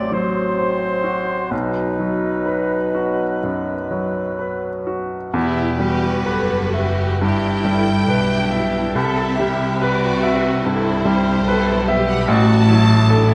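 Classical romantic music for piano and orchestra in E minor, this excerpt moves with a tragic, passionate rubato at around 58-75 BPM in 4/4. An intimate, up-front baby grand piano carries the melody throughout, its long sustain and audible action noise giving it a natural, close presence. In the opening seconds, woodwinds weave second lines around it: a clear solo clarinet, an airy, hollow flute in the background and a mellow, roomy cor anglais, while a mellow bassoon accompanies and a background French horn section holds sustained chords moving from F#dim/A to B. At 5.3 seconds the strings take over. A lush violin section joins the piano on the melody with soft-attacked vibrato, while a more distant violin section and violas add portamento-tinged inner lines. Double basses and, from 5.4 seconds, cellos ground the bass as the harmony passes through Em, Cmaj7 and Dadd9/A, all within the resonant bloom of a concert hall.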